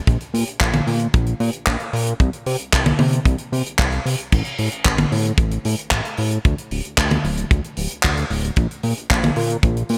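A fat, saturated sawtooth bass with a detuned edge and digital delay drives this danceable, bittersweet italo disco excerpt at 113 BPM, set against an up-front, tight acoustic kick and a natural small-room funk kit of hi-hat, handclaps, toms and crash cymbal with gated reverb, all in a bright 1980s-style digital production with light reverb and tuning at A4 = 436 Hz.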